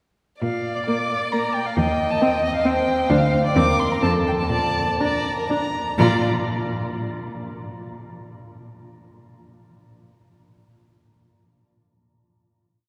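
Lively and cheerful, this brief classical-period movement for string quartet in Bb major moves in a quick, rubato 3/4 at 121-137 BPM, with the first violin carrying a warm, smooth-topped melody full of vibrato and portamento, the rich-toned second violin adding an expressive counter-melody and phrase-end answers, the viola filling in after-beat and sustained chords, and the bright, focused cello plucking and holding the bass up front, all heard from further back in a cathedral-like space whose long reverb blooms around the closing Bb chord at 6.0 s.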